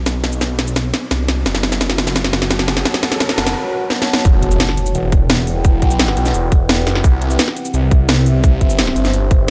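Futuristic and aggressive, this dark technical drum and bass excerpt in E minor runs at 172 BPM, opening with a build-up where a thick, swirling phased saw bass and an up-front kit of cracking snare, metallic hats and shaker fill beneath a deep, warbling ambient pad that arrives at 1.0 seconds under a filter sweep, with a riser in the background. At 4.3 seconds the drop lands with an impact and a tight, layered electronic kick, the chords shifting from B and F#m to Em and then C, while sidechain pumping moves the bass and the moody, chorused pad. The mix sits in light digital ambience, the kit carrying a tape-warm, small-room character.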